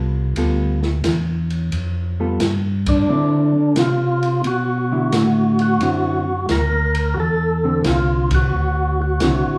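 Soul jazz organ trio in a soulful, greasy groove, cut from a longer piece and swinging at an easy, unhurried pace. A mellow tonewheel organ carries the bass line up front, round and dark with light overdrive, chorus vibrato and a slow rotary speaker. Beside it, a clean hollow-body electric guitar comps softly with fingered, shadowy chords. An acoustic drum kit keeps time on hi-hat, ride, snare and a boomy kick, sounding smooth with dark cymbals. At 2.9 s a second, percussive tonewheel organ takes the melody, fat and lightly gritty with second-harmonic percussion, chorus vibrato and slow rotary, while the band hits accents around 2.7 s and again at 8.2 s as the harmony moves from G9 to D9. The trio plays live together in a stone room whose moderate reverb gives the sound a close, lived-in glow.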